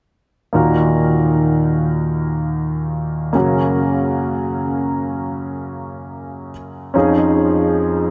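Pop in free time and Eb minor, this short fragment of a longer piece carries a melancholic, heartbroken mood. A clear concert grand piano plays accompaniment from 0.5 to 8.1 seconds, ranging from deep bass up to Bb4, its intimate, polished tone sitting up front with audible action noise, long sustain and analog chorus as the chords move from Ebm to Gb and then Dbadd9/F. The dreamy mix is soaked in a huge ambient reverb with a 5.4-second decay.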